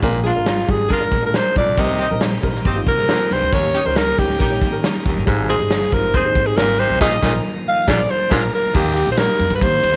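A straight 4/4 pulse at 138 BPM drives this joyful, uptempo 1960s-style soul piece in Eb major, with a raw, punchy garage drum kit up front and a woody, growly pizzicato upright bass, while a breathy baritone saxophone riffs low and a dark, mellow upright piano with audible action noise sits in the background. A raspy alto saxophone with vibrato and slapback echo carries the solo melody from the start until 8.7 s, backed by a close-miked saxophone section on a second line and, from 1.8 s, very quiet piping tonewheel organ chords through a slow rotary speaker. The band hits an accent from 7.0 s over a Bb7sus4 to Bb7 turn before landing on Eb at 8.7 s, all in a studio reverb, as this cut from a longer piece ends.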